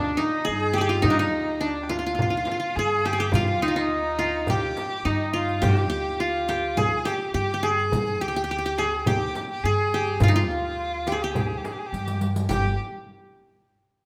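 Hypnotic and soulful, this Arabic maqam ensemble piece in G maqam hijaz moves at 105 BPM in a straight 4/4, cut from a longer performance and set in a moderate recital hall reverb. A bright-edged qanun, played with fingerpicks on its triple strings, carries the melody up front while a rich, smooth violin with vibrato bows a second line, and a woody pizzicato upright bass anchors the low end. A very quiet clay-shell darbuka and a small frame drum in the background keep time, with drum fills at 2.8 and 11.9 seconds, and a riq with bright jingles joins at 3.3 seconds.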